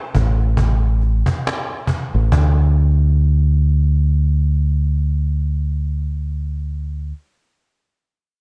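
Lo-fi hip hop at a nostalgic, mellow 69 BPM with a gentle 16th-note swing and slightly flat tuning, this short excerpt pairs a dark, round fingered electric bass sitting up front in a deep dub register, playing until 7.1 seconds, with a snappy cajon that rings through a large room before dropping out at 2.5 seconds, all coloured by a cassette-tape studio ambience.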